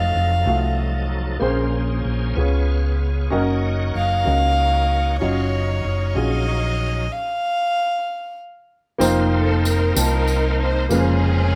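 A slow, straight 6/8 gospel feel at 63 BPM sets a soulful, solemn mood in this passage from a longer piece. A round, dark hollow-body electric bass sits up front beneath a natural-sounding baby grand piano and a bright, shouting tonewheel organ holding sustained chords through a fast rotary speaker, light overdrive and chorus vibrato. A close, nasal, reedy violin with an airy gut-string period tone carries the melody, returning at 4.0 seconds; then a jingly tambourine enters at 9.0 seconds and an expressive bowed studio string section takes up the melody at 9.4 seconds, all played live together in a moderate stone room.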